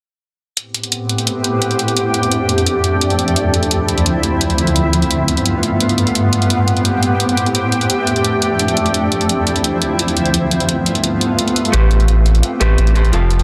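Soulful and lush, this liquid drum and bass piece moves at 172 BPM in A minor, with bright, layered electronic hi-hats entering at 0.6 seconds and a shimmering, ethereal pad arriving at 0.9 seconds to hold sustained chords cycling through Am9, F6, Dm7 and G9. The pad sits up front with an octave-up shimmer, granular, wave-folded texture, chorus and its own reverb, all within a lush hall and a dense, heavily limited modern master. At 11.7 seconds a deep, full sine-and-triangle sub bass with a fast attack enters together with a clean, picked hollow-body jazz guitar, whose tone carries vintage 12-bit sampler grit and delay.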